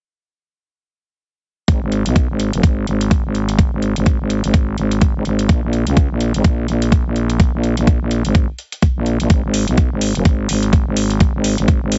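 A swung 4/4 groove at 126 BPM kicks in at 1.7 seconds in this bouncy, gritty bass house cut in G# minor, where an overdriven, knocking electronic kick sits up front beside a growling, thick FM bass with tube saturation and sidechain pumping, while metallic hi-hats re-recorded in a small room add a lighter tick, all in a dry, heavily compressed radio-style sound with a dulled top end, cut from a longer track.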